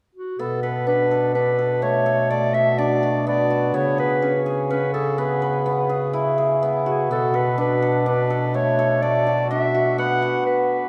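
A short passage cut from a longer piece sits in the generous, wet reverb of a recital hall, with a ring of about 1.8 seconds that fills the space around three close, up-front players. This contemporary instrumental moves at 125 BPM in an uneven 7/4 with a straight feel, and its B dorian colour gives it a restless, urgent mood. A present, classical-style clarinet carries the melody from 0.2 seconds, ranging between F#4 and F#5. From 0.4 seconds a shimmering, ringing hammered dulcimer spins arpeggios between A3 and B4, while a bass clarinet with a soft attack and smooth top holds the low line between B2 and C#3, its tone warm. The harmony shifts from Bm7 to C#m7 and back to Bm7 at 7.1 seconds before the passage breaks off.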